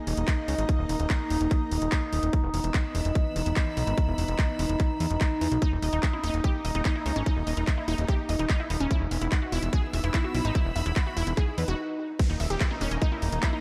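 Driving and intense, this psychedelic trance excerpt runs at 146 BPM in a straight 4/4, built on a tight, overdriven electronic kick that sits up front alongside a punchy, funky analog bass with a filter pluck and ring-modulated edge, while a layered drum kit adds bright hi-hats and handclaps. A resonant, chorused drone with moving overtones holds sustained chords, pumping against the kick with a rich, bowed symphonic string section in the background, and the harmony shifts between Eb5 and E5. At 5.6 s a lush, detuned unison pluck enters with a warbling, vintage tape colour and analog delay, a very quiet nasal wobble bass surfaces briefly from 6.1 s, and a background swell and downlifter lead through a short break into the drop at 12.2 s.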